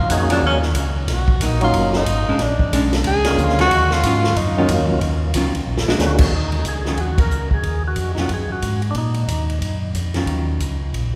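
A breathy tenor saxophone takes the lead in this smoky, soulful soul jazz organ trio excerpt, its clear, present tone carrying vibrato, subtone and scooped notes through a jazz-style solo that ends at 4.9 seconds. Underneath, a mellow tonewheel organ holds down the bass line with a round, dark sound, audible key click and a slow rotary speaker. A second tonewheel organ plays melody with a full, percussive attack, second harmonic percussion and its own slow rotary swirl. A swinging big-band drum kit, natural and up front with a medium-tuned snare and punchy kick, drives the fast swing tempo in Eb minor, and a clean, picked hollow-body archtop guitar adds quiet electric accompaniment. A drum fill at 5.7 seconds, over an altered dominant chord, leads into the next section, where a band accent lands at 7.1 seconds over a rich minor ninth chord, all bathed in a long, wet church reverb.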